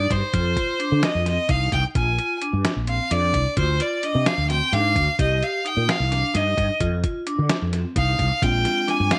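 A bright, earthy violin carries the melody from the very start of this tense, brooding progressive instrumental, bowed by one player with light vibrato and sitting up front despite a slightly distant quality. Beneath it, vibraphone arpeggios ring with a metallic, airy shimmer from medium hard mallets, while a mellow fretless electric bass adds a dark, round and punchy low line, thickened by an ensemble chorus. A dusty, sampler-style drum kit comes in at 0.1 seconds with hi-hat, a thumpy kick and a medium-tuned snare, its compressed, gritty sound driving the straight 7/8 pulse at 260 BPM counted in eighths. The harmony moves through F5, Bb7, Dm7b5 and Cm before circling back, and at 8.4 seconds a worn, slightly out-of-tune tine electric piano adds clean accompaniment just as the Bb7 returns. Light reverb and digital ambience frame the band in this short cut from a longer piece, tuned to A4 = 438 Hz.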